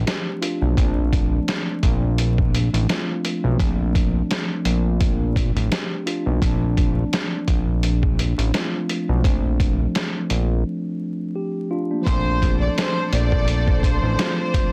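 Dense and heavily limited with vinyl crackle and a dry, close sound, this short cut from a longer boom-bap hip-hop track carries a soulful, confident mood over a swung groove. A muffled, pitched-down sampler-style drum kit sits up front, its thumpy kick, medium-tuned snare and hi-hat sounding compressed and tape-warm, as if re-recorded in a small room. Beside it, a fat, thick analog bass with a detuned sawtooth tone, fast attack and filter sweep sustains low notes, while a mellow, clean tine electric piano accompanies over a Bbmaj9 chord in the background, colored by cassette tape, band-limiting filters and plate reverb. After a break at 10.7 seconds, a soft-attack violin section enters at 12.1 seconds with a pure, floating melody played sul tasto and trailed by digital delay. An intimate string section joins at the same moment with smooth, vibrato-laden sustained chords far beneath it in the mix.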